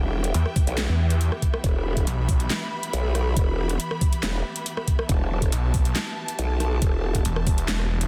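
A bright, lush string section holds sustained E minor chords with intense vibrato and a sidechain pump, while an up-front growl bass wobbles through a formant filter with chorus and overdrive in this heavy, aggressive half-time wobble dubstep excerpt at 139 BPM. A snarling, detuned sawtooth bass with a moving notch and distortion joins at 0.3 seconds, drops out at 2.5 seconds and returns at 5.5 seconds, over a knocking, tape-warm electronic kick and a layered kit of huge snare, metallic hats, handclaps and rim clicks. The mix sits in a digital ambience with a dense, heavily limited modern master.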